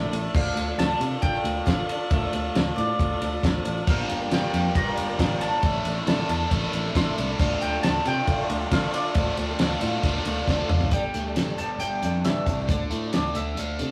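Folk rock and heartland rock in D minor at 136 BPM, reflective and dusty, where a woody, double-strung mandolin carries the melody over a boxy, picked swing-style acoustic guitar, a reedy, breathing harmonium in the background that stops at 10.9 seconds, fingered electric bass, and an up-front damped 70s drum kit with a fat snare and tight kick, joined at 3.9 seconds by a crunchy, double-tracked overdriven guitar riff with phaser, captured in a rough rehearsal-room recording with small room ambience and wet studio reverb.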